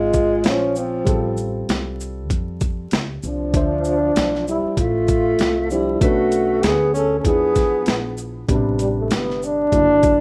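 Nocturnal and cool, this jazz-hop excerpt at 97 BPM with a swung 16th-note feel pairs a breathy, distant trombone melody, carried through analog delay, with a subtoned tenor saxophone second line that bows out at 8.2 seconds, leaving the trombone to solo from 8.5 seconds, while a dark, mellow concert grand piano, a woody pizzicato upright bass and a gritty, overdriven boom bap drum kit with thumpy kick, snare, hi-hat and shaker sit under a roomy reverb and vinyl crackle in a rough home-demo mix.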